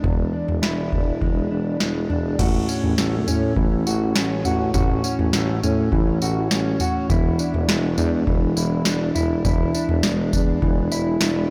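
A blown-out, overdriven recording with light reverb carries this blissful, ethereal dream pop fragment in A major at 102 BPM, its harmony moving from E7 to A6 at 2.4 seconds and back to E7 at 7.1 seconds. Up front, a dark, clean, compressed electric guitar plays fingered arpeggios through analog chorus and delay. A booming analog drum machine, re-recorded in a large room, delivers a deep kick, crisp snare, tambourine, toms and crash cymbal, while a warm tuba carries the bass line with light vibrato in a pop style.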